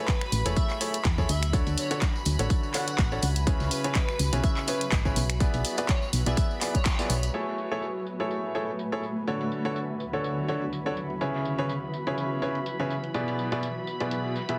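A bright, woody upright piano riff opens this uplifting piano house excerpt over a cloudy granular pad, sustained chords from a clear chamber violin section and an airy, dreamy chorused lead with dub echo, soon joined by a punchy layered electronic kick, a round FM bass, a tambourine, an analog drum machine's snaps, claps and hats, and a gritty, very quiet sampler-style kit; the kick, bass, lead and tambourine drop out around 7.3 seconds, when filter sweeps move across the drums and violins under a heavily compressed, radio-like sound.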